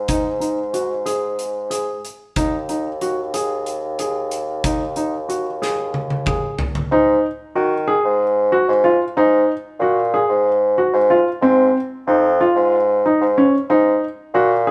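A light-vibrato bassoon opens this bright, intricate progressive instrumental in 7/8, carrying a roomy, classical-style bass line as a baby grand piano joins with intimate, short-sustained arpeggios whose action noise is audible. A big acoustic rock drum kit with a punchy kick and medium-tuned snare drives the first half and closes it with a fill from 5.6 seconds, then drops out at 6.9 seconds, leaving bassoon and piano to move through the harmonies of the second section. The whole band plays live in a moderate stone-room ambience, and this clip is cut from a longer piece.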